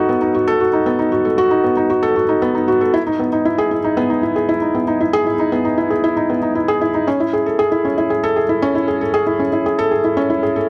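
A hushed, intimate sound with audible key action and a moderate echo-chamber reverb frames this hypnotic, moving electronica excerpt at 116 BPM in straight 4/4, where a felt-muted upright piano sits up front repeating a soft, mellow riff between B3 and A4, touched with digital delay, for the full 10.7 seconds.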